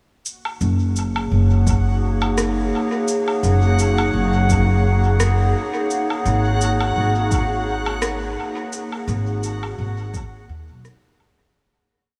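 A lightly swung 85 BPM groove in 4/4 carries this hazy, deep ambient dub piece, where a sparse electronic beat of shaker, woodblock and rim click trails dub echo, a soft, deep electronic kick enters at 1.7 s, a woody pizzicato upright bass sits up front with a dub-style line, a warbling, lo-fi tape-like pad with chorus holds dark, slowly shifting chords from F# to G#7(no3), and a reversed, granular texture swells on a bright held high note, the dreamy mix soaked in a huge 7.6-second reverb before a fade-out from 7.8 s.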